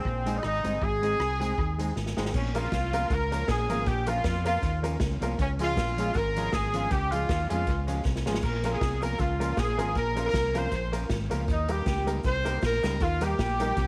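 A clear horn section with vibrato carries the melody up front in this joyful ska piece at 158 BPM, swinging lightly on the eighths over a round, punchy fingered electric bass and a polished, airy big-band drum kit with tape echo and fills at 2.0 and 8.1 seconds. In the background, a clean semi-hollow electric guitar with tape echo plays accompaniment while a woody, slightly detuned upright piano with audible action noise adds stabs, and a grainy, very quiet cabasa joins at 2.4 seconds. The cheerful whole sits in moderate spring reverb with vinyl crackle, moving from Ab to Bb minor and on to Eb.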